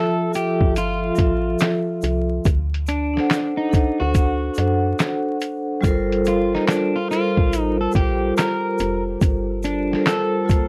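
A dry, gritty recording with vinyl crackle frames this nostalgic, reflective lo-fi hip hop excerpt in G minor at 71 BPM with a swung 4/4 feel, where a dark, slightly broken-up fingered electric guitar carries the melody over a ringing vibraphone accompaniment with slow motor vibrato and cassette tape colour, a muffled, thumpy sampler-style drum kit with handclaps and hi-hat up front, an egg shaker in the background from 0.3 seconds, and a woody, round FM bass with tube saturation entering at 0.6 seconds, moving through Fmaj7, D7 and Gm11.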